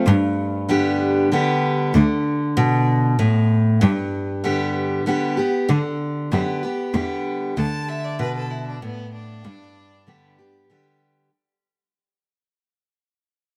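Country music in an easygoing, sunny mood, set in a lilting three-beat metre and cut from a longer piece. A picked steel-string acoustic guitar carries the accompaniment throughout, its fresh strings giving a bright, full-bodied tone. A bowed cello supplies the bass line from the start, smooth and even with a rich vibrato, and drops out at 9.5 seconds. Near the close a single fiddle adds a clear, focused second line with light vibrato, sitting much lower in the mix than the guitar and cello. The harmony moves between G and D5 chords, and the music fades out across its second section. Light reverb places the players a little further back in the room.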